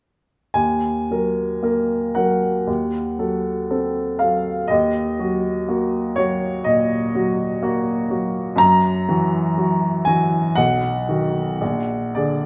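A freely breathing rubato pulse in 4/4 carries this melancholic, mournful romantic nocturne for solo piano, cut from a longer piece, where a clear, open baby grand with long sustain sits up front in a moderate recital hall reverb, moving from Ebm through Ebdim7, Gb7 and B before settling on Bb7 near 11.6 seconds.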